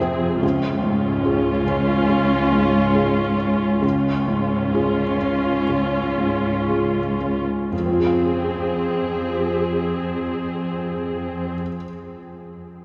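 Drenched in a long cathedral reverb and heard from further back in the room, this sorrowful, moving fragment of a cinematic film score in F minor drifts at a rubato 57-74 BPM, slowing through its opening 7.7 seconds over a Db chord before settling onto F minor. A felt-muted upright piano plays soft, intimate accompaniment with its action noise audible, while a rich viola section sits up front and a cello section supplies the bass, both bowed with expressive vibrato and portamento. The strings fall away around 11.6 seconds, leaving the piano to ring on until 12.8 seconds.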